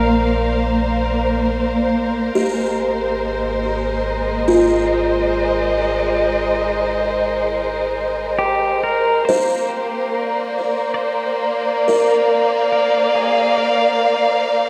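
Ambient music at 70 BPM in Bb mixolydian, luminous and serene, cut from a longer piece and heard through the soft grain of cassette tape with a wet concert-hall reverb. A dark studio string section carries sustained bowed chords from start to finish, close and up front, with expressive vibrato and portamento as the harmony moves from Bbadd9 to Abadd9 at 2.3 seconds and back to Bbadd9 at 9.3 seconds. Beneath it, a round, sine-like sub bass holds deep, mellow notes before fading out by 9.2 seconds. From 2.4 seconds a buzzing kalimba adds woody, hollow-box arpeggios with a thumbnail pluck, ringing through tape echo. A bright, clean electric pedal steel guitar, played with fingerpicks and slide, sits in the background with a brief touch at the opening, then returns at 8.4 seconds and fades in from 9.3 seconds to carry the melody with volume swells and tape echo through the closing section.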